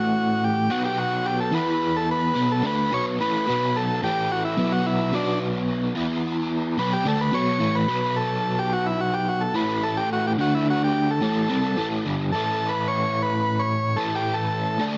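A buzzy, vintage overdriven combo organ with light vibrato and slapback echo takes the solo melody across this hazy, hypnotic rock excerpt, set up front over a crunchy, bright, double-tracked electric guitar riff picked through a rotary speaker, all bathed in a moderate plate reverb.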